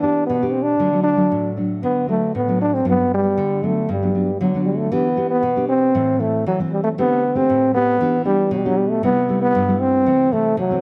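A breathy, close-miked trombone carries a jazz-style solo melody with light vibrato over a thumb-plucked classical nylon-string guitar from the first moment, both up front in a festive, sunny samba at 116 BPM that moves from G major to E minor at 4.9 s, its chords running from Em7 through Gmaj7, Am and D7sus4 to C6 and Am/C, all set in a moderate recital-hall reverb and captured by close, detailed microphones in this short cut from a longer piece.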